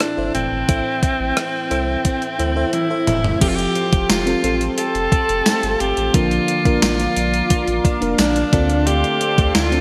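1980s-style pop at 88 BPM in 4/4, this nostalgic, dramatic excerpt is cut from a longer piece and moves through Am, Fadd9, Bb and Dm7 under a bright digital production bathed in lush hall reverb. A forceful alto saxophone carries the melody up front, its punchy tone smoothed at the top and colored by vibrato. Beneath it, an FM electric piano layered with a soft pad supplies dreamy, detuned accompaniment with chorus and tremolo, while a clean, twangy twelve-string electric guitar picks a compressed riff in the background. The gated drum machine sits up front with a thumpy kick, an overdriven gated-reverb snare, hi-hat, rim click, tambourine, toms and crash, and a round sine sub bass joins at 0.2 seconds. A drum fill from 2.7 to 3.4 seconds leads into the second section, and a shimmering pulse-width pad enters at 3.8 seconds with slow-attack retro chords.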